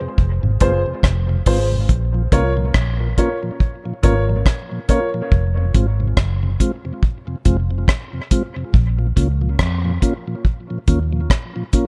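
Dub reggae with a spacious, heavy mood, this short excerpt from a longer piece sets a dry, tight-kicked acoustic drum kit and a round, punchy, foam-muted electric bass up front, while a soft, flute-like tonewheel organ drifts through a slow rotary speaker and dub echo beneath woody, slightly detuned upright piano stabs that echo out and stop at 5.1 seconds, all in a dark production with light reverb.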